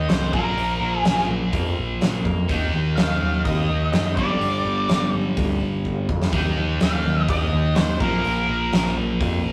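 Classic rock with a sunny, confident mood, this brief excerpt from a longer piece sets a double-tracked, up-front distorted electric guitar riff against a growling, overdriven picked bass, while a dark octave-fuzz lead guitar carries the melody until 8.9 seconds. A big acoustic drum kit with a fat snare, punchy kick and hi-hat drives a straight beat and breaks into a fill at 5.9 seconds. The whole take has the rough feel of a rehearsal room, wrapped in a moderate stone-room reverb.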